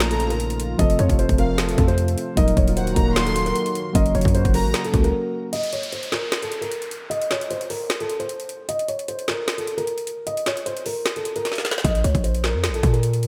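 A dark, boxy concert grand piano carries the melody from the opening, up front and softened by a low-pass filter and digital delay. Alongside it from the start play a warm, sul tasto violin section with light vibrato, soft triangle-toned electric-piano-like keys with chorus, and a detuned sawtooth pad sitting moody in the background. This melancholic trap cut moves at 152 BPM in a half-time feel, with a hard-hitting, sine-based 808 bass and a trap kit of knocking kick, woody snare and metallic hats bathed in gated reverb. The harmony moves through Bbm, F, Ebm and Gb. At 5.5 seconds the strings, keys and pad have dropped away, leaving the piano and drums to carry a stripped-down break while an electronic downlifter sinks through the mix. After a drum fill, the punchy 808 returns at 11.8 seconds, all within a bright 1980s-style digital production with light ambience.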